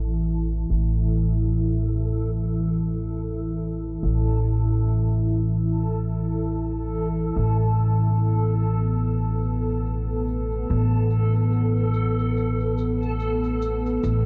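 Dark, dry production with a low-pass filter sweep running throughout frames this melancholic, smoky trip hop excerpt at 72 BPM, swung on the sixteenths and moving from A5 to Asus2 at 7.4 seconds. Up front, a woody pizzicato upright bass holds low A beneath a deep, detuned ambient pad whose slow-attack sustained chords carry chorus and reverb, while a reversed, granular texture adds a dreamy swell. A tube shaker sits quietly in the background, and a very quiet electronic riser appears at 14.2 seconds just before the cut.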